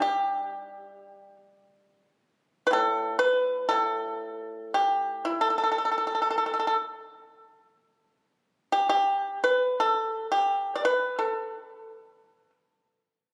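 Rubato phrasing over a loose 4/4 pulse of roughly 81-92 BPM carries this pastoral, elegant fragment of Chinese traditional music, cut from a longer piece, in which a solo acoustic pipa, mellow yet percussive and dry up front under fingerpicks, ranges from A2 to D5 until it stops at 12.5 seconds, captured on a phone in the room with light club reverb and compression.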